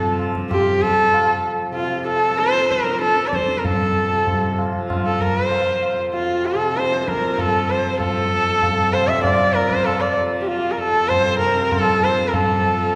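Set in a seven-beat cycle at 96 BPM with a straight feel, this Hindustani classical passage is cut from a longer performance and carries a radiant, devotional mood, tuned slightly sharp to A4 = 441 Hz. The bowed sarangi leads the melody from the opening moment, sitting up front and loudest in the mix. It has a nasal, boxy voice with light vibrato, soft attacks and expressive portamento glides, and its sympathetic strings add a resonant halo. Beneath it, the tanpura holds a low drone throughout, softly plucked with a buzzing, shimmering warmth. The high-tuned tabla enters at 0.2 seconds with a short ring, sounding distant and set back in a large room. A lush concert hall reverb with a two-second tail places the ensemble further back in the space and gives the whole performance a spacious, glowing atmosphere.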